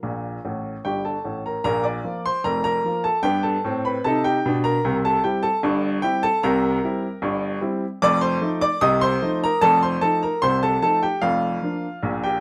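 A clear, woody upright piano carries this short solo ragtime passage, sitting up front in the sound with a polished, present tone. The mood is playful and jaunty, moving at a relaxed 75 BPM in 2/4 with a straight feel, and the music stays in B-flat major. Its range stretches from F1 to Eb6, spanning deep bass notes up to bright high ones. A brief fill from 0.4 to 1.6 seconds leads into the main strain, where the harmony moves through Bb, G, C7 and F7 before settling on Bb/F at 11.2 seconds. Moderate studio reverb adds a touch of room around the piano in this fragment cut from a longer piece.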